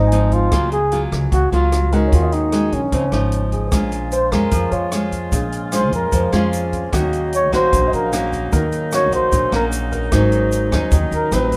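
A dry, close-sounding bossa nova excerpt at 150 BPM with a romantic, breezy mood, moving through chords such as Dbmaj9, Ebm7 and Bbm7 before resting on Ab7sus4. Up front, a dark, whispered flugelhorn with vibrato and a soft attack carries the melody over full-bodied, fingerpicked nylon-string guitar, a woody, growly pizzicato upright bass, and an open jazz kit of hi-hat, rim click and boomy kick, while a smooth, vintage grand piano sits in the background. At 3.7 seconds the flugelhorn moves into a solo as a distant, roomy woodwind section adds tight sustained chords with light vibrato, and a grainy egg shaker joins in the background.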